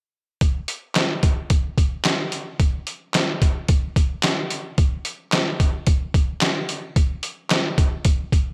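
A straight 4/4 funk groove at 110 BPM runs through this late-night excerpt, carried entirely by a gritty, pitched-down trip hop sampler-style drum kit whose thumpy kick, medium-tuned snare, hi-hat and handclaps sit up front, compressed and overdriven with gated reverb, from 0.4 to 8.5 seconds in a lightly reverberant room.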